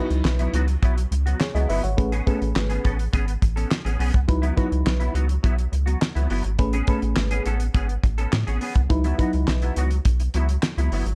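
Early-eighties boogie funk at 104 BPM in C# minor, funky and slick, this is cut from a longer piece and built on a C#m11 to Amaj9 vamp. A rubbery, bouncy square bass with a resonant filter pluck sits up front beside a damped 70s drum kit with a fat snare, tight kick, hi-hat and handclaps, while a clean, compressed semi-hollow guitar riff with ensemble chorus and a warbling FM electric piano through a phaser fill out the arrangement, the piano stopping at 9.8 seconds. The production is dark and warm, with light reverb and small room ambience.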